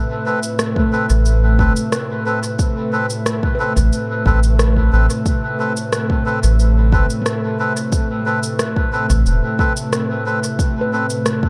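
Light reverb and a digital ambience frame this echo-heavy, meditative ambient dub piece at 90 BPM in A minor, resting on a single Amadd9 chord. An airy pad with a slow attack and chorus holds sustained chords up front, while a reedy melodica fires stabs through dub echo, a very quiet handpan rings out arpeggios from 0.8 seconds, and a round, soft sub bass sits deep beneath until 9.4 seconds. A tape-warm electronic kick drives the straight 4/4 pulse, joined by an electronic shaker and rim click that carry their own dub echo and the sound of a large room.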